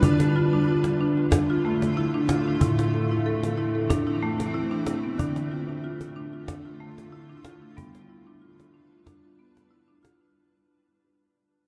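Hypnotic and gentle, this short meditative world excerpt of tuned percussion sets an up-front, woody marimba played with medium mallets tracing arpeggios over a cloudy, blurred granular pad and a cajon with faint snares, all bathed in a vast cathedral reverb with audible compression artefacts, as chords move from Dm through Am to G while the piece fades out across its 10.4 seconds.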